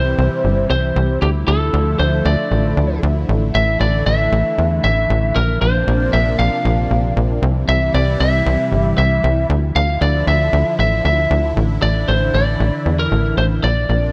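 A punchy, nasal sequencer bass, a thick detuned unison pad treated with chorus and phaser, and a twangy, slightly broken-up electric lead guitar with delay all sound together from the start of this cinematic, nostalgic synthwave excerpt in D minor at 116 BPM, tuned to A4 = 438 Hz. The tube-saturated bass sits up front and drives a straight 4/4 pulse beneath the pad's slow-attack sustained chords, while the bright, picked guitar carries the melody over a progression that moves from C through Dmadd9, Asus4 and Bbadd9. Light reverb surrounds the mix through to the cut at 14.1 seconds.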